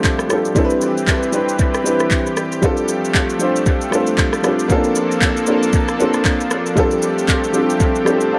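Amapiano with a soulful, relaxed mood, built on a swung sixteenth-note feel and heard here as a short cut from a longer piece. A dark grand piano sits up front with a mellow, worn, boxy tone, carrying the accompaniment through chords that move between F69, Cmaj7 and Bbmaj7, its notes trailing a dub echo. Beneath it, a lush unison pad holds sustained chords, thick and warbling with a vintage, detuned sawtooth character, slow attack and long release, brightened by chorus. A smooth R&B drum kit, electronic and produced with a soft kick, handclaps, rim click and shaker, also sits up front and carries its own dub echo. A very quiet electronic swell enters at 7.0 seconds, and the piano adds a brief fill at 8.1 seconds, all within an echo-heavy mix dressed in light reverb.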